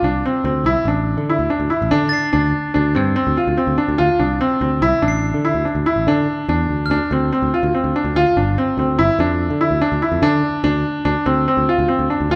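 A driving 5/4 pulse at 144 BPM, played straight, propels this urgent, hypnotic excerpt of contemporary chamber music in D minor, cut from a longer piece. Up front, a clear, worn grand piano circles through arpeggios in its middle range while a picked electric bass growls beneath it with a bright, amped bite, the harmony shifting from D7(no3) to a rootless G7sus4 at 6.9 seconds. From 2.1 to 7.1 seconds a glockenspiel struck with hard plastic mallets adds metallic, sparkling bell tones in the background, all set in a moderate recital hall reverb.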